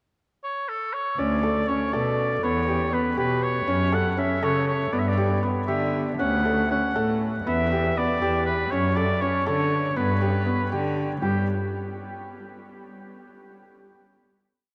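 Restless yet hopeful, this brief contemporary chamber piece in 5/8 at 239 BPM (eighths) and G lydian opens with a clear, vintage-toned oboe singing a free, classical-style solo melody with vibrato from 0.4 s, joined at 1.2 s by a felt-muted upright piano's soft, intimate arpeggio ostinato with audible action noise and a rich bowed cello giving root-and-fifth bass on the main beats with expressive vibrato and portamento, the three parts up front within a vast, echoing space of huge, wet reverb until a final note arrives at 11.2 s.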